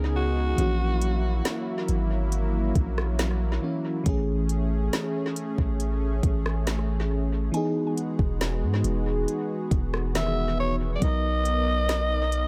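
Contemporary R&B with a dreamy, smooth mood, this excerpt sets a lush FM electric piano with chorus and tremolo over a sawtooth analog pad that breathes with sidechain pumping, while a deep, sine-like 808 bass sustains up front beneath chords moving from C#5 through F#7, Amaj7 and Emaj7 to Bmaj7. A raspy, gritty alto saxophone with vibrato and tape echo takes brief solo phrases at the start and returns at 10.2 seconds, and a produced drum kit with a soft kick, woody snare and smooth hats, also bathed in tape echo, enters at 0.6 seconds. A very quiet, round mallet-like pluck with phaser adds texture from 7.5 seconds in an echo-heavy mix with little reverb.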